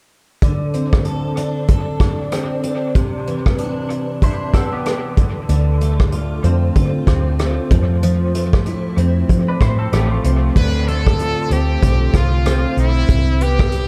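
An echo-heavy mix with a light studio reverb frames this mellow, lonely slice of indie bedroom pop, with a gentle swing to its 16th notes. A bright, full-bodied picked steel-string acoustic guitar carries the accompaniment up front, treated with ensemble chorus, vibrato and dub echo, over chords moving through Cmaj9, Dm7 and Fmaj7. An unplugged drum kit played with bundle sticks sits in a roomy, distant studio space, pairing a punchy kick and rim clicks with dark cymbals and hi-hat. A warm, hollow-body electric guitar adds clean, compressed second-line phrases low in the mix, first at 4.2 seconds, while a round, foam-muted vintage bass with an amped, dusky tone enters at 5.5 seconds. At 10.6 seconds a brilliant, forceful pop-style trumpet takes a solo melody, its scooped notes and vibrato wrapped in analog chorus and dub echo.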